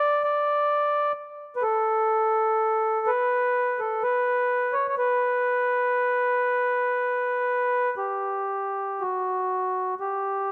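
Rubato phrasing drifts around 56 to 65 BPM in 4/4, giving this short Caucasian folk lament in B minor a slow, unhurried gait and a solemn, longing mood. A lone accordion carries everything from 0.0 to 10.5 s, its reedy, round voice sitting up front and staying between F#4 and D5. A moderate concert-hall reverb with a 2.0-second decay surrounds it, and the phrase turns to a new idea at 9.0 s before the cut from the longer piece ends.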